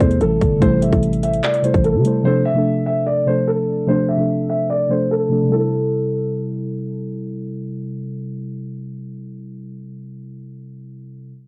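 With light reverb and the lo-fi feel of a home cassette recording, this eerie, melancholic half-time trap fragment opens with an overdriven drum kit of handclaps, metallic hi-hats and a hard-clipped kick alongside a growling, buzzy 808-style bass, both gone by 2.1 seconds, while muted, warbling felt-like synth keys carry the Am7 and Dm7 harmony through a filter sweep until 11.3 seconds and a dark, boxy concert grand piano plays the melody up front until 6.7 seconds.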